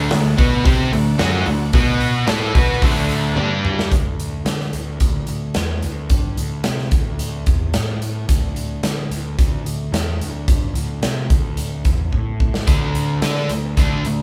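A big, up-front acoustic rock kit with a punchy kick and a medium-tuned snare drives this sunny, swaggering classic rock excerpt at 110 BPM in D mixolydian, tuned to A4 = 436 Hz, with drum fills along the way. For the opening 3.9 seconds, a bright, double-tracked, compressed distorted guitar riff leads two crunchy overdriven guitars sitting in the background, while a very quiet, shouting tonewheel organ with key click and slow rotary speaker holds sustained chords. After that, drums and a fuzzy, overdriven electric bass carry on alone until the two crunchy guitars return at 12.7 seconds, with the band playing live together in a large studio room with moderate reverb.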